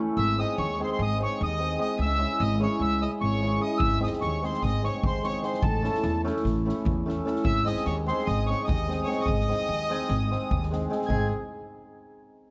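Balkan folk in the manner of a wedding band, this bittersweet, virtuosic fragment of a longer piece moves at 297 BPM in eighths through a straight 9/8. A bright, shimmering cimbalom opens the recording with hammered, ringing accompaniment set up front, joined almost at once by the accordion, the violin and the upright bass. The accordion carries the melody high in its register with a reedy, sweet, vintage and band-limited tone, colored by a light tremolo tuning. Beneath it, a single bowed violin plays a smooth, even second line with vibrato, while the pizzicato bass on steel strings sounds woody, dark and growly. At 3.8 seconds a soft-mallet drum kit enters with a boomy kick and a medium-tuned snare in a big-room sound, as the harmony circles around G#, C#m and A. Close, detailed microphones and light reverb keep each instrument distinct.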